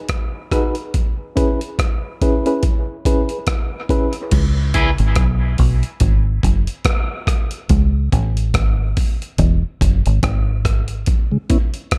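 A gritty, compressed breakbeat-style drum kit opens this deep, spacious dub reggae excerpt at 71 BPM in C# minor, its thumpy kick, hi-hat, rim click and crash cymbal sounding up front as if re-recorded in a large room, with a swung sixteenth-note feel. At 0.5 seconds a reedy, clean electric piano adds stabs through fast tremolo and dub echo over G#m7 and C#m7 chords during the opening break. The second section arrives at 4.3 seconds with a deep, round, foam-muted fingered bass, dark and up front, as the harmony moves through C#7, F#sus2, C#5 and E. A brief twangy, slightly broken-up picked guitar figure flickers in with dub echo, and near the close a soft, flute-like tonewheel organ touches a C#m7 through a slow rotary speaker. The overall production is dark and warm, wrapped in digital ambience.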